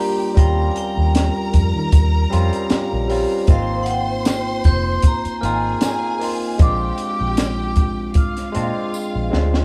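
Smooth and warm, this excerpt of lush 1970s-style soul moves at 77 BPM in Eb major with a gentle sixteenth-note swing, as a bright, ringing vibraphone carries the melody over an expressive violin section with vibrato and portamento, while a barky tine electric piano, lightly overdriven and phased, supplies the chords and a bell-like glockenspiel glints in the background. From 0.4 seconds a round, foam-muted fingered bass settles in alongside a compact cocktail drum kit that sits up front with a punchy kick and high-tuned snare, a jingly tambourine joins at 4.3 seconds, and the drums close with a fill at 8.9 seconds. The band plays live together in a stone room whose moderate reverb gives the Eb13, Ab69 and Bb7 changes an intimate glow.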